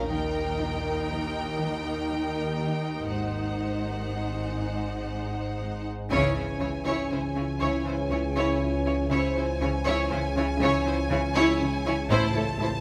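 Bathed in a moderate scoring-stage reverb, this tense, ominous cinematic passage in 3/4 sets smooth, bowed violin sections with vibrato on the melody and a second line over an expressive, close viola section, a clear cello section and a rich double bass section in the background, a nasal organ-like drone with ensemble chorus, a very quiet ringing harp and a very quiet cello riff, before a mellow French horn section enters with sustained chords on a band accent at 6.1 s.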